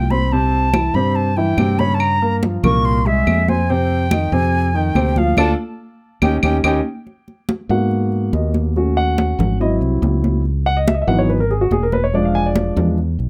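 A straight 4/4 groove at 142 BPM drives this sultry Afro-Cuban jazz excerpt: ringing, high-tuned congas played with soft hands, woody claves and a dark, round fingered electric bass sitting up front. An airy silver concert flute with vibrato and a plate-reverb sheen carries the melody in C minor until 6.8 seconds, near the close of a band accent, while the grand piano comps beneath it. At 7.1 seconds the key shifts to G# minor and the piano takes a solo, heard through close, detailed microphones until 13 seconds, just before the cut ends.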